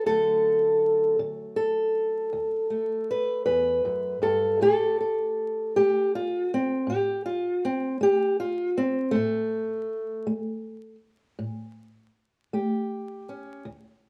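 Gritty and rollicking, this short excerpt of acoustic country blues rolls along at 53 beats per minute in a straight 12/8. A single fingerpicked guitar carries the whole passage, an old ladder-braced instrument with a dark, woody, boxy voice and the dull bite of old strings. It sits up front in the sound and ranges from a low D2 up to B4. The harmony rests on D before shifting to A7 at 4.6 seconds, holding there through the end at 14.1 seconds. A moderate reverb gives the feel of a large studio room, with the performance captured live in one space, and a layer of vinyl crackle adds a worn, vintage patina.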